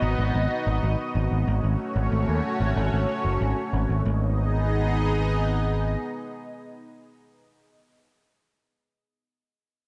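Synthwave at 93 BPM in G# phrygian, tuned to A4 = 443 Hz, this nocturnal, moody fragment of a longer piece moves from B/G# through F#m/G# to a G#m chord at 4.1 seconds. A thick, detuned sawtooth-and-square unison pad with a sub octave holds sustained chords with a slow attack and long release, sitting bright and up front through chorus and phaser. Beneath it, an overdriven picked electric bass, direct and amped with a low-pass filter, stays low until 5.9 seconds, leaving the pad ringing alone in light reverb until 7.4 seconds.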